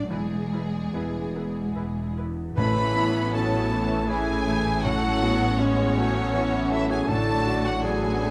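A rich, vibrato-laden violin section carries the tender melody over a second, more focused violin line, with a bright, brilliant grand piano with long sustain and a dark, woody viola section in the background, a very quiet thumb-plucked harp ringing in arpeggios, and lush bowed cellos and double basses underneath. This cinematic, moving film-score excerpt in A major unfolds in a rubato 3/4 at roughly 72-81 BPM. At 2.6 s a pure, straight-toned flute and a classical-style clarinet add second lines while a very quiet, roomy French horn section holds sustained chords and close, dry timpani sound until 3.7 s, all within a moderate scoring-stage reverb.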